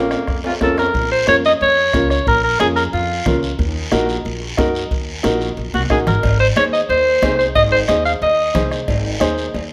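A driving, danceable cumbia groove in straight 4/4 comes from a soft-beaten bombo and hard-handed, high-tuned congas sitting in the background, with a raspy, saturated guiro scraping along beside them. A clear, vintage-toned alto saxophone leads up front with a pop-style solo melody, pausing at 3.4 seconds and returning at 5.7 seconds. Beneath it, a dark, mellow upright piano supplies woody, short-sustained accompaniment, while a growly, thumpy pizzicato upright bass anchors the low end. Very quiet, distant timbales and cowbell ring out at the start and come back at 6.2 seconds, and brief drum fills mark both the opening and the saxophone's return. The chords move from Bbm to Ebm to Ab, all set in a moderate large-studio reverb, and the passage is cut from a longer piece.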